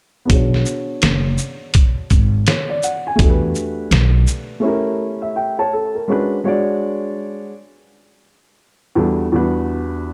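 A gritty, compressed sampler-style drum kit, pitched down and set up front with a thumpy kick, medium-tuned snare, hi-hat and shaker, drives this smoky, cool jazz-hop fragment at 83 BPM, swung on the 16ths in B dorian. A woody pizzicato upright bass on gut strings plays alongside it from the start until both drop out by 4.5 s. A dark, boxy upright piano carries the jazz chords through a filter sweep, plays a fill from 5.0 s, and continues alone in light reverb until 10.1 s.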